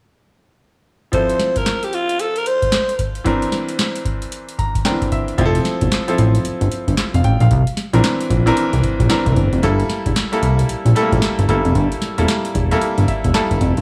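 Slick and bouncy, this new jack swing excerpt moves at 113 BPM with a swung sixteenth-note feel, as a booming analog drum machine with a deep kick, crisp snare, metallic hats and handclaps plays alongside a bright, polished grand piano over Fmaj7 and C9 chords in a small room. A breathy, raspy alto saxophone with vibrato and scooped notes states a short melody through digital delay from 1.1 to 3.0 seconds, and the piano plays a fill just before the fat, sawtooth-edged analog bass enters at 5.4 seconds. From there the thick, detuned bass sits up front as the harmony moves on to Gm69, with one more piano fill closing the passage.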